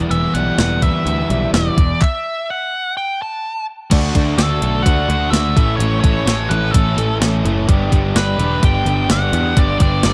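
A clean, sampler-style 12-bit drum machine drives a straight 4/4 pulse at 127 BPM, its thumpy kick, medium-tuned snare, hi-hat, handclaps and crash pushed up front and roughened with grit. This upbeat yet wistful indie rock cut in D major opens on Em and Esus4 before a stop from 2.0 to 3.9 seconds, after which the harmony moves through D, A and G. Two overdriven electric guitars play riffs throughout: one compressed, the other sitting in the background with a shimmer of analog chorus. Beneath them, a picked electric bass gives a dark, round, foam-muted tone taken direct. A nasal lead guitar with a parked wah carries the melody in a higher register, its warm tone thickened by drive and trailed by analog delay. A digital ambience gives the mix a sense of space in this passage cut from a longer piece.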